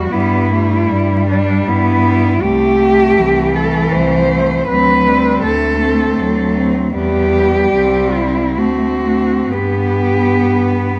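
Tender and lyrical, this classical excerpt for cello ensemble moves in a rubato 3/4 at 62-81 BPM. An expressive, up-front solo cello carries the melody with vibrato, soft attack and portamento, while an intense second cello sings in the background. A focused, close cello supplies the accompaniment, and a smooth-topped bass cello sits prominently beneath. The harmony passes from Em/G through Am/C and D7 to a close on G at 9.5 s, all set in a moderate recital-hall reverb with a vinyl crackle.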